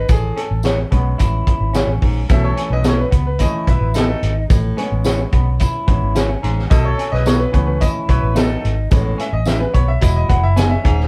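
A roomy, live-in-one-room sound frames this danceable, uplifting slice of uptempo 1960s-style soul, where a brilliant, short-sustained grand piano takes the lead over a dark, foam-muted bass and a punchy vintage kit with a high-tuned snare, joined by a twangy picked guitar riff, slightly broken-up lo-fi guitar stabs, a distant baritone saxophone riff with vibrato, a jingly tambourine in the background, and a tight horn section in octave doubling that enters at 2.3 seconds and drops out at 8.8 seconds.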